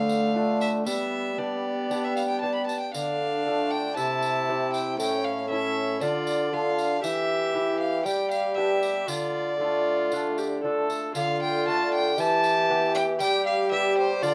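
A renaissance-style consort dance in D dorian, this 14.3-second excerpt from a longer piece moves at 117 BPM in a straight 4/4, with a solemn yet rustic air. A rich, up-front violin carries the melody with light vibrato and a reedy gut-string tone, played by one bowed player in period style. Beneath it, a single bowed viola adds smooth-topped accompaniment in a similar gut-string manner, while a fingerpicked lute, delicate with its doubled gut strings and some octave-doubled courses, fills out the harmony. A solo bassoon anchors the bass with a warm classical tone and light vibrato, and a jingly tambourine, entering at 0.1 seconds, sits quietly in the background with a small-room sound. Light reverb surrounds the ensemble as the harmony circles through Dm, G, C, A and Em, with the opening phrase returning at 11.2 seconds.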